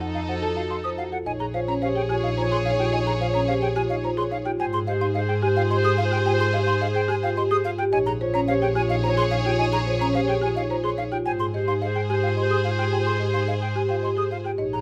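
A vibraphone played with soft mallets, its motor off, spins mellow, metallic, ringing arpeggios at the center of this hypnotic, meditative excerpt of minimalist classical pattern music, set in Bb dorian at 108 BPM in a straight 3/4. Above it, an airy, hollow concert flute with vibrato and a crisp attack adds arpeggios of its own from 0.1 s, while a woody, rustic folk marimba with medium hard mallets carries the melody from the background in a dry, boxy small-room tone. A distant, roomy clarinet in classical style sings a second line, and a symphonic violin section holds smooth, even sustained chords with vibrato. Underneath, a rich bowed double bass with vibrato sits up front. The harmony opens on F7b9 and then settles into a slow alternation of Bbm11 and Ab6, captured with close, detailed microphones and little reverb.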